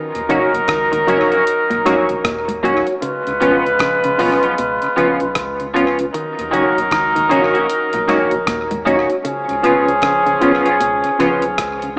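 A clear, punchy horn section plays an up-front second line with tape echo at once, alongside a hollow-body electric guitar picking quiet arpeggios, in this serious, meditative roots reggae excerpt at 77 BPM in Eb minor, swung on the sixteenths and moving between Ebm7 and Db7. A gritty, sampler-style drum kit with a thumpy kick, hi-hat and rim click joins with a deep, round dub sub bass tucked in the background, a second fingered semi-hollow guitar with analog chorus and tape echo, a very quiet dark tonewheel organ with key click and slow rotary speaker, and a reedy electric piano playing stabs through fast tremolo. The rough home-demo mix has a small-speaker sound bathed in a wet plate reverb.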